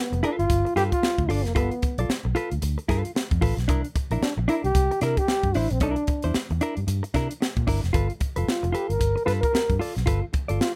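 A breathy, intimate trombone opens this gritty funk excerpt at 113 BPM in G mixolydian, carrying a mellow, scooped, lightly vibrato jazz-style melody over a clean, compressed semi-hollow electric guitar, a round, foam-muted vintage fingered bass and a crisp fusion kit with a high-tuned snare and punchy kick, all up front in a dry, rough home-demo mix that swings on the sixteenths as the chords move from G9 to C9 at 3.7 seconds and back at 7.9 seconds.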